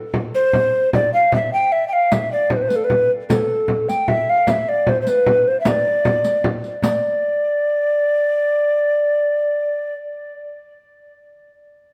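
Driving and ancient, this medieval dance in 6/8 at 102 BPM in D dorian, cut from a longer piece, sets an up-front, airy, hollow-toned wooden tenor recorder with vibrato, tongued chiff and tape echo over a small, close and dry frame drum played with soft hands from 0.1 s, joined at 2.1 s by the bright jingles of a riq until both drums stop at 7.0 s, leaving the recorder alone as the band, playing live together, rings in a wet stone room.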